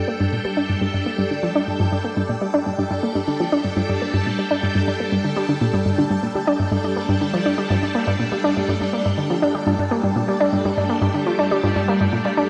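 An up-front analog pluck drives this hypnotic, cosmic stretch of ambient space music, its round, nasal, wave-folded riff carrying a chorus sheen and analog delay at 122 BPM in a straight 4/4 in G minor, tuned to A4 = 439 Hz. Above it, a swirling, vintage string machine holds bright, slow-blooming sustained chords through ensemble chorus and phaser, while a very quiet concert harp rings out fingerpicked arpeggios. Cut from a longer piece, the 12.5-second passage rests on a single Gmadd9 chord, bathed in a wet spring reverb and an echo-heavy mix.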